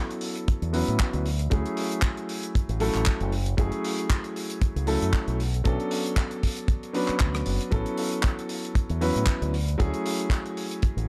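Groovy and sunny, this nu-disco excerpt moves at 116 BPM with a light 16th-note swing, built on a boxy, intimate grand piano, heard from the start with audible action noise, long sustain, sidechain pumping, a low-pass filter and dub echo, voicing chords like A6, Dmaj9#11, F#m9 and Bm9. A bright fingered electric bass with an envelope filter and its own pumping sits up front from 0.5 seconds, joined by a dry, tight kick drum. A damped 70s drum kit with a rolled-off top adds handclaps, hi-hat and rim click, all wrapped in a small room ambience.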